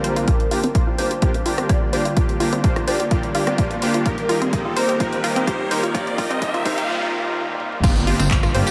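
A swell opens this dreamy, bittersweet progressive house passage, cut from a longer piece. A detuned pad with chorus and a gritty 12-bit sampler edge holds sustained chords beneath a bright, catchy unison lead, whose melody is coloured by phaser and tape echo. An analog pluck spins round, chorused arpeggios in the background, a soft supersaw adds smooth, detuned stabs, and a mellow, funky analog bass sits very quietly in the mix, while the pad, lead, pluck, supersaw and the kit's hats, toms and cymbals pump with the sidechain. The punchy, up-front electronic kick enters at 0.3 seconds to start a build-up, with filter sweeps on the arpeggio, pad and lead, and a riser and noise sweep in the background. The tape-warm house kit of handclaps, hi-hat, rim click, toms and crash cymbal plays fills. The lead stops at 6.9 seconds, and a jingly, distant tambourine joins at 7.8 seconds as the chords return to where they began, all bathed in a vast, high-passed ambient reverb.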